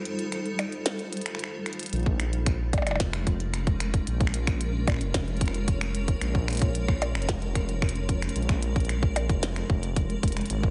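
A straight 4/4 pulse at 112 BPM drives this intricate, melancholic IDM piece in Bb dorian, cut from a longer work. It opens with a break in which a granular cloud pad holds a blurred, slowly evolving F9 chord with its own reverb and a gritty 12-bit sampler edge, while a glitchy electronic kit of finger snaps, clicky hi-hats, percussion blips and a tiny snare ticks along with it. A drum fill at 1.7 seconds leads into a Bbm7 chord. A deep, rumbling detuned saw bass enters at 1.9 seconds, its beating, saturated tone sitting up front. A tight electronic kick joins at 2.1 seconds and also sits up front, while the drums carry the ambience of a large room. The mix is otherwise dry, with a dark top end that keeps the bright, full-bodied pad hazy.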